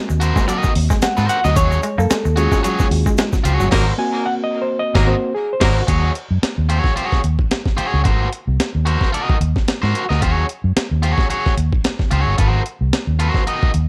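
Funk at 111 BPM in Eb dorian, cool and sly, with a swung sixteenth feel, cut from a longer piece and moving between Ab9 and Eb minor chords. A barky, overdriven reed electric piano takes a solo of stabs through the first 5.9 seconds, joined for the opening 3.7 seconds by a twangy clean guitar riff and a grainy egg shaker in the background. A warm horn section with light vibrato and tape echo then adds a loose second line during a band accent from 3.7 seconds. Underneath, a gritty, pitched-up breakbeat drum kit with a thumpy kick, a round foam-muted bass and a biting overdriven guitar sit up front and carry on to the close around 13.9 seconds, all in a dry sound.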